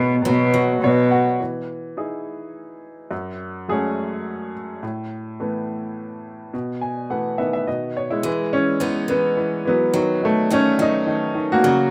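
Heartfelt and intimate, this acoustic folk-pop ballad in E major moves at 105 BPM in a straight 3/4, led by an up-front upright piano with a bright, woody tone, audible action noise and plate reverb carrying the melody and adding fills, while a jumbo steel-string guitar with fresh strings and slapback echo picks arpeggios at the start and returns at 8.2 s, and a reedy, gut-string cello bowed by one player holds a single bass note only until 1.3 s, all in a small room with a rough home-demo feel as chords such as Emaj7, F#madd9 and B7sus4 pass by in this section cut from a longer piece.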